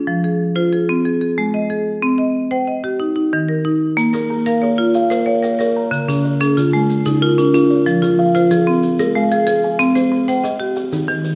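A rolling 12/8 pulse at 124 BPM, counted in dotted quarters with a straight feel, drives this hypnotic, warm southern African traditional piece, cut from a longer work and built on an mbira-style interlocking cycle in a Bb equiheptatonic tuning. A hard-mallet marimba opens alone, its rosewood bars sounding bright, woody and percussive in close, dry, up-front arpeggios over a cycle that moves through Fm, Cm and Eb. At 4.0 s grainy maracas join softly in the background, and at 4.1 s a buzzing kalimba enters up front with fingertip-plucked arpeggios that ring with a hollow-box, mellow character. From there the harmony turns to Bbm and Db before the Fm, Ab, Cm, Eb cycle returns. The recital hall reverb of a church or concert hall adds a moderate, resonant halo that gives the interwoven patterns a spacious glow.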